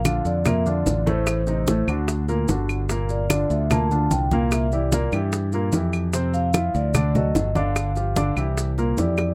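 Afro-Cuban jazz at 148 BPM in a straight 4/4, this lively, danceable passage is cut from a longer piece and runs just over nine seconds. A vibraphone struck with soft mallets carries the melody in a mellow, ringing voice with its motor off, while a warm grand piano sits up front with the accompaniment. A bright fingered electric bass, direct and forward in the mix, anchors the low end from the first instant. Congas with low-tuned, thin skins played with hard hands, and tight, high-tuned bongos played with soft hands, sit in the background alongside woody claves and grainy maracas that carry a touch of small-room air. The harmony moves through rich colors such as Bbmaj7, Gm11 and C9, and a drum fill at 9.2 seconds closes the passage in a close, dry sound with little reverb.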